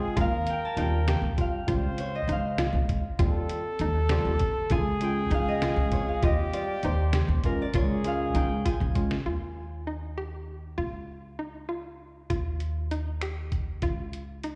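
A ringing, fingerpicked concert harp takes the solo melody in this bright, driving excerpt of progressive instrumental band music in 5/8 with a straight feel, its lines trailed by slapback echo and digital delay until 10.2 seconds. Beneath it, a close-miked flugelhorn with jazz-style vibrato plays a second line, while a barky, lightly overdriven tine electric piano, colored by phaser and played through a combo amp, supplies accompaniment. A hollow, bouncy square-wave pluck with a detuned, chorused shimmer spins arpeggios throughout. A woody pizzicato upright bass sits up front alongside a muffled, pitched-down sampler-style trip hop kit of finger snaps, hi-hat, thumpy kick and medium-tuned snare. A drum fill closes the opening section, the drums then drop out at 9.2 seconds and return at 12.3 seconds, all over harmony that alternates between Eb and Db chords such as Ebmaj9, Dbmaj7 and Ebadd9 in a live club setting heard through the venue's PA with light reverb.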